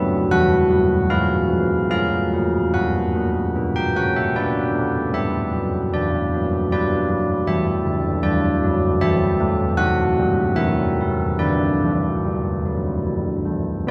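Wintry and solemn, this short classical passage, cut from a longer piece, gives a church-bell tune in 3/4 to solo carillon bells ranging from D3 to G5 across the full 13.9 seconds. The bronze bells sound dark and smooth, with a minor-third overtone and the knock of a worn iron clapper, while a long, wet cathedral reverb places the listener further back in the room. Harmonies drift from Em through Fdim and F# to Bm and G, then C/E, before a brief unharmonised moment at 10.6 seconds settles onto Bm/D.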